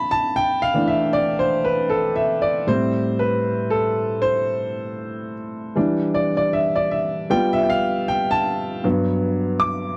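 Soul in A minor at 78 BPM with a lightly swung sixteenth-note feel, this silky, bittersweet solo grand piano passage, cut from a longer piece, sounds warm, boxy and up front in a dry, close 1970s-style studio recording, moving through E7sus4, Am7, Em7 and G7 before settling on Gmaj7 at 8.8 seconds.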